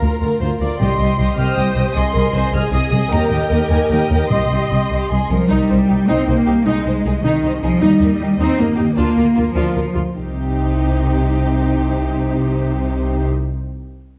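A dark recording sits in a reverberant recital hall, giving this cinematic, heroic adventure cue a lush, rounded glow that stays clear of any bright top end. Moving in a straight 6/8, the strings carry an adventurous, determined mood throughout, with a close-miked studio violin section singing the melody with expressive vibrato and sliding portamento. A second violin section sustains a smooth, even line beneath it, while violas fill the middle with soft-attacked, warm accompaniment. Cellos sound rich yet distant, and an up-front double bass section anchors the low end with expressive bowing. Soft-mallet timpani add round, dry strokes in the background, first at 0.8 seconds and again at 4.3 seconds, as the harmony circles through minor and major chords before the passage returns home to C minor at 10.2 seconds.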